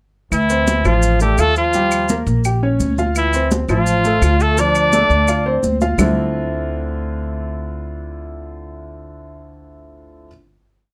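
Afro-Cuban jazz in D minor, fiery and sophisticated, moving at a brisk 170 BPM in straight 4/4 through a short, complete piece. A clear, punchy trumpet carries a motif-based melody of call phrases up front with scooped notes and light vibrato, while a breathy trombone doubles it an octave below, set further back. The upright bass sits up front with a dark, thumpy gut-string pizzicato tumbao that anticipates the chords, and a concert grand piano with audible action noise plays a montuno in octaves from 0.5 seconds. Ringing, high-tuned congas with slaps and open strokes and a woody two-bar clave line fill the background, joined by grainy maracas, until about 6.1 seconds. The harmony moves from Dm9 to Eb9 and back, and after the horns stop the piano and bass hold a final chord to the close at 10.3 seconds, heard through close, detailed microphones with light reverb and a faint mains hum.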